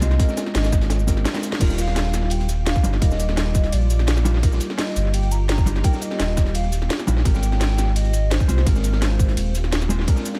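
A dry, echo-heavy mix carries this dreamy, lush liquid drum and bass fragment, where a deep, up-front sub bass with octave and a tight electronic kick anchor a layered garage drum kit of cracking snare, crisp hats, cabasa, crash and ride, a gritty, saturated breakbeat kit sits in the background, a clean hollow-body jazz guitar with tape echo and a very quiet, ethereal shimmering pad hold Abmaj13 and Ebmaj9 chords, and a woody, warbling clarinet-like synth lead with vibrato sings the melody, with a brief break and drum fill at 1.3 seconds.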